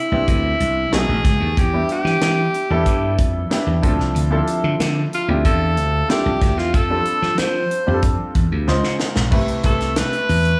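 Upbeat and breezy, this polished 1980s jazz-funk pop passage moves at 93 BPM in a straight 4/4, cut from a longer piece. An edgy, breathy alto saxophone carries the melody up front with scooped notes, over a clear baby grand piano with short sustain and a lush chorus, a bright, growly slap bass, and a tight acoustic funk kit with a high-tuned snare and gated reverb. The harmony drifts from Cmaj7 through Em7 and Dm7 to F6, and a drum fill at 8.7 seconds leads through Dbmaj7 into a new section on Am9/C at 9.3 seconds, all in a light studio reverb.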